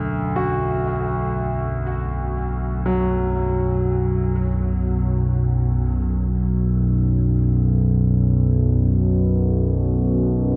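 Dark ambient drone in free time, cavernous and dark, where an up-front analog drone of evolving sawtooth and pulse-wave tones with pulse-width modulation, slow attack, long release and chorus holds low beneath a bright, brilliant concert grand piano playing deep-bassed arpeggios through tape echo, both present throughout this 10.6-second cut from a longer piece and bathed in a huge, wet reverb.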